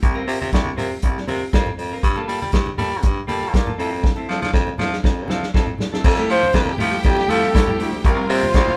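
A raspy, gritty baritone saxophone carries the bass line in this glamorous, joyful disco excerpt at 120 BPM in F major, sitting up front beside a punchy vintage drum kit with dark cymbals and a pumping room sound, while a clean picked electric guitar and low-tuned congas fill in underneath and a drum fill leads into the second section at 6.0 seconds. There, a breathy, intimate flugelhorn takes the melody, a lush violin section adds a second line in the background, and a clear symphonic string section holds sustained chords as the harmony moves from Fmaj9 back to C7sus4. The whole band sounds as if it is playing live in one room with moderate studio reverb.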